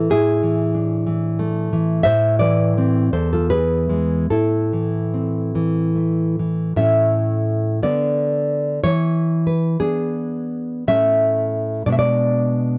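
Intimate and melancholic, this short cut from a longer romantic piece for solo nylon-string classical guitar moves in a rubato 6/8, its dark, full-bodied fingerpicked tone sitting up front in a dry, close 1970s-style studio sound as the harmony turns from minor to major at 6.8 seconds.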